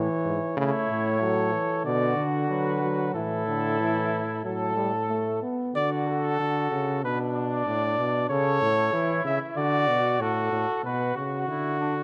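A close, detailed recording with light reverb presents this lively, elegant classical brass canzona in D major, an imitative piece at 94 BPM in a straight 4/4, cut from a longer work. A mellow cornet carries the melody up front throughout, the clear, punchy bass trombone with its smooth top anchors the bass beside it, and a warm euphonium with light vibrato adds accompaniment until 5.7 seconds. A flugelhorn with vibrato, sounding distant and roomy, enters at 0.6 seconds with a second line as the harmony moves from A through Bm and a rootless Gmaj9/A toward D.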